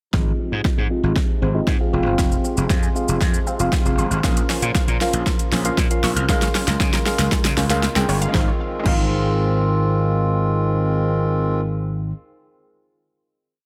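Soaked in dreamy plate reverb, this short, euphoric and summery dance-pop piece builds for its first 8.3 seconds with a drum fill and a filter sweep over a punchy, overdriven deep house kit playing a four-on-the-floor beat with a fat snare and metallic hats, a growly, up-front slap bass carrying a syncopated line with muted ghost notes, syncopated chords from a worn, slightly out-of-tune tine electric piano, a reedy, breathing harmonium pad, and a very quiet, warbling sawtooth unison pluck running rising sixteenth-note arpeggios, before the drums drop out at 9.0 seconds and the rest ring out on a final chord.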